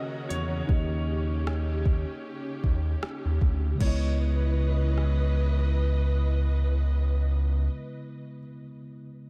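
A late-night, sensual contemporary R&B passage, cut from a longer piece, opens with a concert grand piano carrying the melody in its upper register, treated with ensemble chorus and tape echo. Beneath it, a mellow tine electric piano plays through its built-in speakers, and a lush bowed string section holds sustained chords with vibrato and sidechain pumping. At 0.3 seconds a gliding synth bass and an electronic, produced R&B drum kit arrive up front. The bass is detuned and saturated, blending sawtooth and triangle tones with portamento, vibrato and a moving notch, while the kit pairs a soft kick and rim click with metallic hi-hats and a crash cymbal in a small-room sound. The groove sits at 77 BPM in 4/4 with a swung sixteenth-note feel in C# dorian, moving from D#m7 to D#7 before settling on C#m9 at 3.8 seconds. The drums drop out at 5.2 seconds, leaving keys, strings and bass in light reverb and digital ambience, with the electric piano the last part heard.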